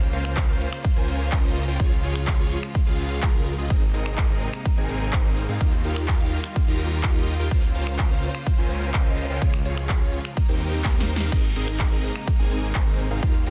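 A bright, close string section holds sustained chords in the background alongside a thick, detuned saw bass with chorus, both pumping under sidechain, as this triumphant, uplifting festival progressive house drop in Ab major at 126 BPM surges forward with huge, lush supersaw chords carrying the riff through phaser and tape echo, an overdriven big-room kit of punchy snare, crisp hats, handclaps, finger snaps, shaker, ride and crash cymbals, and an up-front punchy electronic kick entering at 0.4 seconds, with a drum fill from 10.8 to 11.3 seconds leading back into the drop in a dry, dense, heavily limited mix cut from a longer piece.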